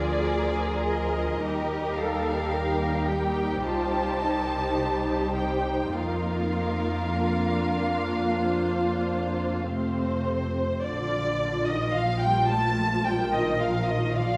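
Tender and lyrical, this excerpt from a slow romantic movement for string orchestra in Bb major drifts in rubato at around 47-56 BPM, with all five muted sections playing throughout its 14.4 seconds. Veiled, con sordino violins carry the melody while a second violin line sits up front beneath it, the dark violas supply a smooth-topped accompaniment, and lush cellos join warm, forward double basses on the bass, every section bowed with vibrato. A wet scoring-stage reverb surrounds the ensemble, and the harmony moves from Bb7/D through Eb, Cm and F before settling on Bb as a new section begins at 10.9 seconds.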